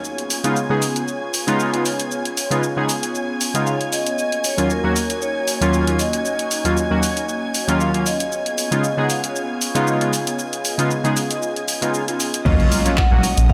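Smooth and moody, this deep house excerpt rides on up-front, detuned analog key stabs with tape echo over an airy, breathy pad carrying vintage sampler grit, a bowed violin section with vibrato and an overdriven analog drum machine of crash, handclaps, hi-hat and shaker. A metallic, ringing vibraphone melody with digital delay enters at 3.7 s. At 12.5 s a very quiet downlifter and impact mark a drop where a deep sine sub bass and a punchy layered kick join, with soft-handed congas and bongos following a moment later, all inside a moderate echo-chamber reverb.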